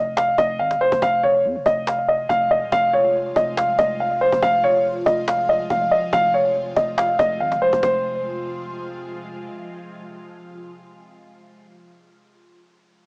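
A half-time trap groove in 4/4 sets a melancholic, menacing hip hop mood in this short cut from a longer piece, with a woody, close and dry cajon carrying faint snares from 0.2 s and a growling, buzzy 808-style bass with a fast attack and decaying tail underneath. Up front, a dark, mellow concert grand piano with short sustain plays the melody through tape echo, while an ethereal, airy detuned pad enters at 2.5 s with slow-attack sustained chords washed in ensemble chorus, phaser and reverb, lingering alone after the other parts stop. The whole piece has the lo-fi character of a cassette home recording heard through a small speaker, with light reverb.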